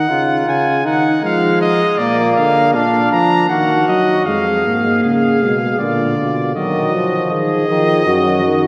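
Contemplative yet driving, this imitative classical canzona for brass in 3/4 sets a bright, up-front trumpet melody over a mellow, distant flugelhorn second line and a dark, smooth-topped euphonium accompaniment, each with light vibrato, before a clear, roomy bass trombone enters on the bass at 4.3 s, all bathed in a lingering church reverb in this brief cut from a longer piece.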